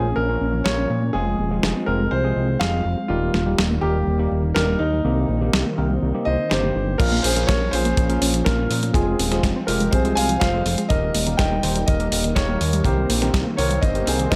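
Lightly reverberant and nostalgic, this bittersweet italo disco excerpt sets an up-front concert grand piano melody with tape echo over a smooth, chorused analog pad, very quiet lo-fi, warbling pluck arpeggios, gritty overdriven tine electric piano stabs filtered into the background, and a fat, detuned sawtooth bass, with a tape-warm 12-bit drum machine of crash, hi-hat and snare entering at 0.7 s and a dry, tight acoustic kick joining at 7.0 s.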